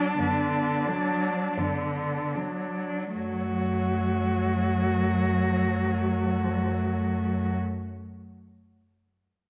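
Moving in a free, rubato 4/4 at a very slow 36-46 BPM and slowing down over the first 3.2 seconds, this short cut from a longer classical piece for cello ensemble carries a solemn, yearning mood in F# minor. Four bowed cellos, each a single player, make up the texture. Up front and close, a dark cello sings the melody between D4 and F#4 with expressive vibrato and portamento, while a dark, woody cello anchors the bass on a low F#2 from 0.2 seconds. Set further back, two warm, distant cellos fill the middle, one shaping a second line from A3 to D4 and the other an accompaniment from D3 to F#3, both with vibrato and gliding portamento. The harmony rests on Bm over F# before settling onto F#m at 3.2 seconds, and a moderate recital hall reverb lends the whole ensemble a sense of space.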